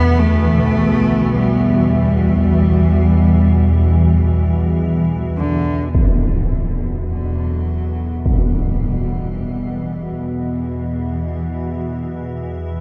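This dark, unsettling ambient drone opens at a slow 52 BPM in E minor on an Emadd9 chord. A calm organ-like drone with chorus sits up front, beneath a bright, blurred granular cloud pad holding sustained chords, very quiet bronze carillon bells ringing arpeggios, and a smooth bowed cello with vibrato and delay carrying the melody. At 5.9 seconds a huge, low-pass filtered impact strikes up front as the pad and cello begin fading in, the impact ending at 8.5 seconds, all within a vast ambient reverb and a cassette tape character.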